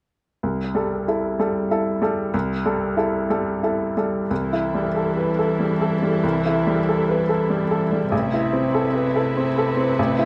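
Neoclassical piano and strings in a longing, melancholic mood, drifting at 94 BPM in 3/4 with a rubato feel. A clear, intimate upright piano sits up front with audible action noise and a woody, natural tone, carrying the accompaniment over a C6 harmony; at 4.3 seconds a rich, floating solo cello enters on a bowed sul tasto second line, joined by a dark string section holding sustained chords with vibrato. A moderate large studio reverb surrounds the sound as the harmony moves to Amadd9 at 8.1 seconds in this short excerpt.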